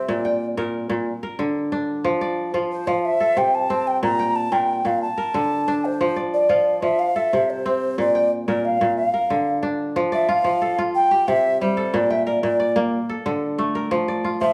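Flowing and joyful, this short passage cut from a longer piece sits in West African traditional string and xylophone music, moving at 121 BPM in a straight 12/8. A bright alto ocarina carries the melody throughout, its clay tone airy and lifted in the highs, with a soft attack and vibrato, ranging from C5 to Bb5. Beneath it, an up-front kora plays fingerpicked arpeggios from Bb2 to G5, acoustic and ringing with a crisp edge. The harmony circles through Bb, Dm/F, C and Gm/Bb in the opening section, then shifts at 10.0 seconds to a second section built on F, C, Bb and D5. The two instruments sound like a live band in one room, framed by small room ambience and a wet, large studio reverb.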